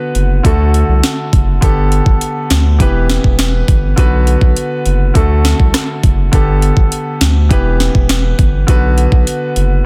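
Dense and heavily limited in a digital ambience, this summery, bouncy dancehall excerpt cut from a longer piece puts an overdriven electronic drum kit up front, re-recorded in a small room, with a knocking kick, sharp snare, rim click and metallic hi-hats. A thick, saturated sine sub bass sits just as far forward, its fast attack and sustained notes giving deep weight underneath. A clear, smooth concert grand piano with a vintage character sits lower in the mix as accompaniment, cycling through D, Gadd9, Em and Bm twice.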